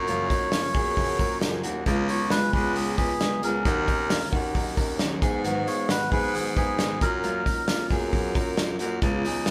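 A reedy, breathy melodica carries the tune in this short cut from a longer jangly indie pop piece, its nasal, boxy tone sitting in a small range near the top of the arrangement. Beneath it, a full-bodied jumbo steel-string acoustic guitar is fingerpicked as accompaniment, while an electric guitar through a small old amp plays dark, slightly broken-up, lo-fi arpeggios. A clear, smooth baritone saxophone takes the bass role in a pop style. From 0.1 seconds a loose indie drum kit sits up front with a punchy kick, medium-tuned snare, hi-hat and a rolled-off top, joined by a jingly, bright tambourine kept very quiet in the mix. The band plays live together in one room with moderate studio reverb, giving a bittersweet, restless mood as the harmony drifts through Gbmaj7, Db7, Ebm7 and Abm7 before returning to Gbmaj7.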